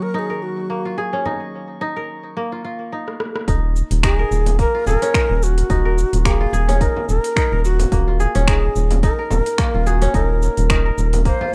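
A breathy, mellow cedar flute melody with delay opens this hypnotic, warm organic downtempo piece in Eb minor at 108 BPM, over crisp, ringing kora arpeggios, a warbling lo-fi pad and a faint, glassy texture of drifting overtones that both stop at 2.4 s; a deep frame drum sits in the background from 1.3 s, and after a brief fill from an overdriven deep house kit with metallic hats, cabasa, snaps and rim clicks, a deep, overdriven electronic kick and a round, dark, pumping analog bass, the bass up front, land at 3.5 s, all in a dry, rough home-demo mix.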